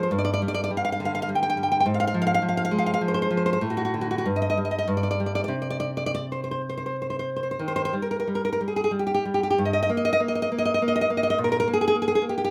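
A lone nylon-string guitar opens on a high G, then moves through a shadowed, searching passage before settling into Eb major at 7.6 seconds in this short romantic fragment for solo classical guitar. The mood is melancholic yet passionate, the 3/4 pulse bending freely in rubato between roughly 84 and 105 BPM. Fingerpicked and sitting up front, the guitar has a warm, intimate tone, with finger squeaks on the strings adding a human, close-up texture. Its range spans from G2 up to G5, and the tuning sits slightly above standard pitch at A4 = 445 Hz. Light reverb gives the sense of a player performing live in a single room, and the passage breaks off at 12.5 seconds, clearly lifted from a longer piece.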